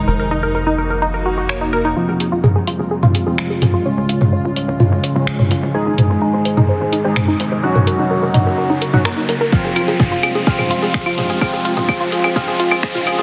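A dense, heavily limited modern master sits inside a lush hall reverb, giving this hypnotic, driving melodic techno excerpt a polished, full sound. A bright, morphing wavetable pad holds sustained chords in the background with phaser and pumping sidechain, while a tight, punchy sequencer bass sits very quietly beneath and a mellow, nasal analog drone hums under the opening until 2.0 seconds. A detuned unison pluck carries the arpeggios with dub echo, joined by an edgy, up-front sync-sweep polysynth playing chorused stabs as the build-up begins and filter sweeps move across the pluck, polysynth and pad. The up-front, tape-warm drum kit mixes claves, finger snaps, warm hi-hats and toms, with a gently clipped, filtered snare. An electronic riser climbs in from 4.5 seconds, and a heavy, layered kick arrives at 9.5 seconds to push the build-up forward over a cycling progression of Gb6, Fmadd9, Db and Ab.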